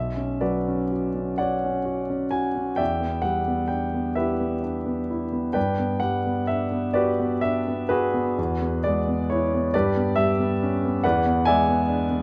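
A concert grand piano opens alone on a Bmadd9 chord, its deep bass and long sustain hanging in the moderate reverb of a recital hall. The music is impressionist classical solo piano in a slow, rubato 6/8, with a mysterious and wistful mood. The harmony drifts through Em7 and Gmaj7, then moves more often among Eadd9, G and E9 toward the close of this 12.2-second excerpt. Close, detailed microphones keep the instrument present and intimate, so the audible noise of its action can be heard beneath the polished tone. The piano ranges from B1 up to G#5, giving the passage a sense of depth.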